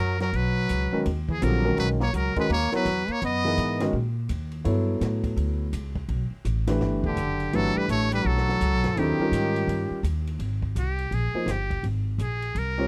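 Modal jazz at a brisk 167 BPM with a swung feel, searching and spiritual in mood, cut from a longer piece, with a trumpet in a metal mute carrying the melody over a buzzy, breathy trombone second line, both horns playing together before pausing at 3.9 seconds and returning, the trumpet's vibrato and scooped notes leading into its own short solo at 10.4 seconds. Beneath them a woody, thumpy pizzicato upright bass sits up front, a concert grand with deep bass adds chords moving from Bmaj9 to Gmaj9, D#7 and Abmaj9, and a compact cocktail kit with dark cymbals, a high-tuned snare and a punchy kick keeps time quietly behind. The sound is dry and close, in a 1970s studio style with little reverb.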